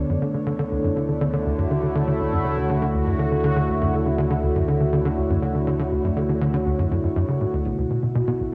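Ambient, sequencer-driven space music at 121 BPM in a straight 4/4, cosmic and mysterious, this short excerpt moves from Dmaj7 to Bm7 as a bright, up-front sweeping pad of detuned, resonant sawtooth chords with chorus rides over a tight, punchy sequencer bass riff dressed in lush chorus and delay, both colored by cassette tape. A deep, round sine sub bass sustains beneath them, and at 7.7 s a very quiet, full-bodied unison pluck slips in with arpeggios. Moderate spring reverb surrounds the parts, and the whole was captured as a home recording on cassette.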